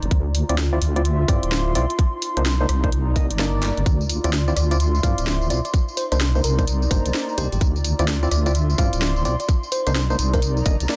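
A deep, dark wobbling bass with chorus sits up front in this late-night, skippy two-step UK garage excerpt at 128 BPM in D phrygian, driven by a tight overdriven electronic kick and a layered garage kit of cracking snare, handclaps, hi-hat, rim click and tambourine with a drum fill at 3.6 seconds, while a hollow, nasal organ stab with dub echo and an airy, breathy pad with sidechain pumping move between Dm9 and Cm9 until a sparkling, bell-like FM electric piano with tremolo and a cassette-tape tint enters softly in the background at 4.6 seconds, all in a dense, heavily limited modern mix with light reverb.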